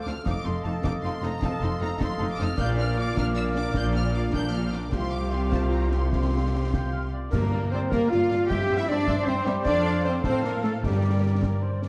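A dark, warm scoring-stage sound frames this swashbuckling, heroic film-score excerpt in a straight 6/8 at 102 BPM, where a lush, intense violin section carries the melody over a second violin line, mellow clarinet, airy flute and oboe countermelodies, rich viola accompaniment, sustained French horn chords, smooth cello and up-front double bass, and concert snare, bass drum and bright clash cymbals, with timpani strikes arriving at 7.3 s as the harmony turns to G dorian.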